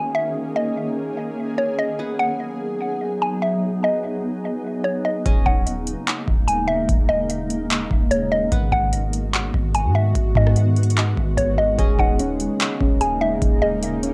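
At 147 BPM in 4/4 with a half-time feel, this hazy, melancholic atmospheric cloud-rap excerpt in G# minor opens on a shimmering ambient pad that pumps to a sidechain under ethereal, detuned chords. Above it, a woody, mallet-like synth pluck carries the melody through chorus, phaser and tape echo, while a plectrum-plucked qanun sits in the background as a bright-edged acoustic texture. At 5.3 seconds a booming analog drum machine arrives up front, its deep kick, metallic hi-hats, handclaps and rim clicks gritty with overdrive, joined by a soft, round 808-style bass. At 11.8 seconds, gentle, warbling electric-piano-like synth keys add vintage arpeggios through chorus and tape echo. The harmony moves between D#7sus4 and G#m7, and the pad, pluck, qanun, keys and drums all carry a cassette-tape patina in a lightly reverberant digital ambience that gives the whole home-recorded piece a hazy feel.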